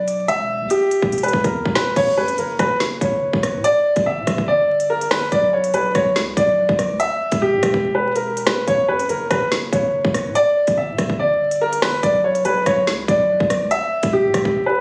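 Captured on a phone in the room with light reverb, vinyl crackle and compression, this dark, ominous drill excerpt moves at 143 BPM in a half-time 4/4 feel in B harmonic minor. An up-front concert grand piano carries the melody between G4 and E5 through a low-pass filter and delay, over a deep, mellow, sine-like 808-style bass whose long notes have a fast attack and decay. Crisp hi-hats, a hard-clipped kick, a woody snare, rim clicks and crash cymbals drive the electronic drum kit until it cuts out at 14.6 seconds, while the chords cycle through Em, F#5, G5 and Bm.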